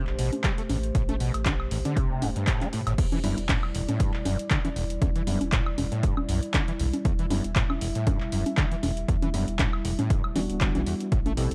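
Acid house in E minor at 118 BPM with swung 16ths, raw and trippy: a squelchy, distorted sawtooth acid bass riff with resonant filter plucks, chorus and delay rides over a round sine sub bass and a dark, detuned analog pad holding Am7 then Em7, all three pumping to the sidechain, while an overdriven, punchy kick sits up front beside a drum machine of metallic hi-hats, handclaps, congas, woodblock and crash, and after the drop at 3.0 s a bright, clean tine electric piano joins at 3.2 s with delayed stabs, the dry hardware recording carrying a gritty cassette-tape character.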